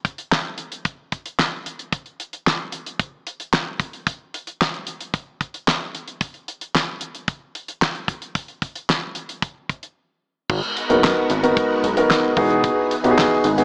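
A straight 4/4 groove at 112 BPM from a damped, dry 70s drum kit with a fat snare, tight kick, hi-hat, handclaps and crash cymbal drives this slick, funky early-eighties boogie funk excerpt in G# minor alone until a break at 10.0 seconds, after which a glossy, detuned chorused synth bass and a swirling phased string machine in the background enter at 10.5 seconds on G#m9 moving to Emaj7, joined at 10.9 seconds by an up-front concert grand piano with deep bass, all under light studio reverb with a small-speaker sound.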